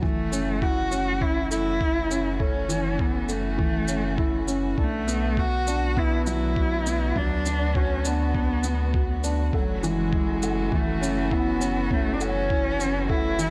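A dark, nasal cello carries the melody with vibrato and portamento over a muted, mellow upright piano riff with audible action noise and delay, a round sine sub bass and a muffled, thumpy electronic kick, while a rich string quartet fades in on smooth sustained chords with sidechain pumping and a distant, roomy shaker and woodblock join at 0.3 seconds, giving this cinematic, intimate piano-and-strings electronica a light small-room reverb.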